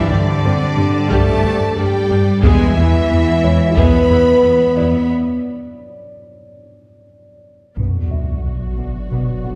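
A straight 4/4 pulse at 90 BPM drives this relentless, tense cinematic cue, a hybrid of orchestra and electronics cut from a longer score. A smooth synth bass riff of sawtooth and triangle tones with ring modulation is joined at 1.1 s by taiko drums struck with heavy sticks, close and dry, while a bowed double bass section and a distant studio cello section carry the low end. Two lush violin sections with vibrato play the melody and a second line, the filtered melody sitting in the background, over a very quiet viola accompaniment, an evolving, detuned pad with chorus, and a boxy felt-muted upright piano treated with delay. Dark French horns sustain chords until 5.1 s, and clear trombones hold quiet chords from 1.1 s. After a break and a drum fill, an up-front electronic sub drop lands at 7.8 s with a filter sweep as the harmony moves to B minor, all set in a scoring-stage reverb heard from further back in the room.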